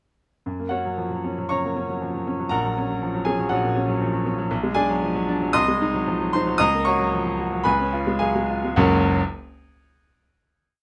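A bright grand piano enters alone at 0.5 s with a sparkling, virtuoso classical study in F# major at a rubato 102-124 BPM in 4/4, tuned to A4 = 436 Hz, its tune carried in filled octaves over rippling figuration. The playing begins slowing down at 3.5 s. The piano sits up front with long sustain and an open, brilliant tone, captured by close, detailed microphones in light reverb, before a final F# chord rings out at 8.8 s.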